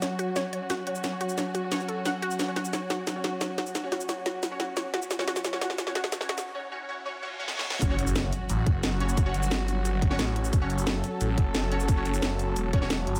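Overdriven drum and bass drums drive this dark, aggressive excerpt in straight 4/4, with a cracking snare, bright hats and cabasa under muted, veiled con sordino chamber strings, a lo-fi warbling tape-like pad and a lush, wave-folded unison pluck arpeggio that stops at 6.4 s, while a bold orchestra-hit-like synth stab with phaser and dub echo sits in the background. A filter-swept build-up breaks at 6.5 s as a very quiet riser and reverse cymbal lead into the drop at 7.8 s, where a very quiet impact lands and a tight electronic kick with overdrive enters up front alongside a swirling, thick, phased detuned saw bass. The strings, pluck and bass pump with sidechain, and a light digital ambience frames the mix.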